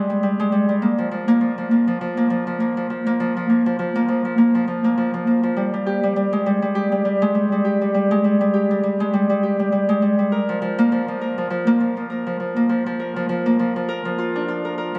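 A bright, ringing, fingerpicked Celtic harp plays alone and up front through this playful, warm 15-second folktronica excerpt at 101 BPM in 4/4 with a lilting 16th-note swing and tuning at A4 = 443 Hz, moving between F3 and Bb4 with delay on its notes and circling Bb harmony (Bb5 at 0.8 s, open passages, then Bb at 10.3 s) inside a dreamy, reverb-soaked plate space with a long 3.5-second tail and a softened top end capped at 10.5 kHz.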